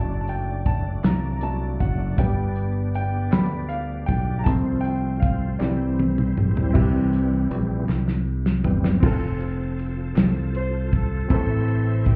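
A slow 6/8 gospel pulse at 53 BPM, counted in dotted quarters, sets a reverent, uplifting mood in F major. A warm soul drum kit sits up front with a fat snare, tight kick and dark cymbals, alongside a growly, punchy fingered electric bass, a clear, polished baby grand piano that takes a solo over the opening, and a reedy tonewheel organ holding sustained chords with key click and fast rotary speaker. Very quiet, hollow group handclaps come in at 1.0 seconds, the organ steps forward for a brief solo at 6.8 seconds, and a mellow, distant saxophone section with light vibrato enters on the melody at 10.6 seconds, all sounding muffled as if heard through a wall in club reverb.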